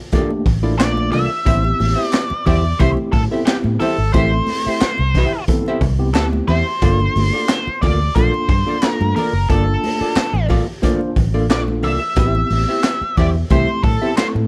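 Funk with a sly, hypnotic pull, this excerpt sets a gritty, boomy garage drum kit with handclaps against a round, foam-muted fingered bass sitting up front, a dark hollow-body archtop guitar comping cleanly, mellow tine electric piano stabs, very quiet close congas, faint crisp group handclaps, and an octave-fuzz lead guitar carrying the melody from 0.8 seconds, all circling Gm9 and Am7 in a small room.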